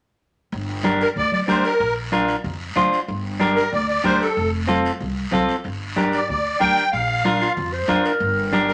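A wet but short studio reverb surrounds this driving, danceable cumbia, a brief cut from a longer piece. A pizzicato upright bass with a woody, growly tone and steel strings starts at 0.5 seconds alongside a raspy guiro recorded close and dry. Bright, damped congas with a thin skin and a clean, picked electric guitar in a warm, up-front accompaniment join moments later. The musette accordion carries the melody up front, its reedy, shimmering tuning captured close-miked and full over a minor-key progression. Near the end, at 7.3 seconds, a mellow clarinet adds a jazz-style second line with vibrato, soft attacks, scooped notes and a smooth top.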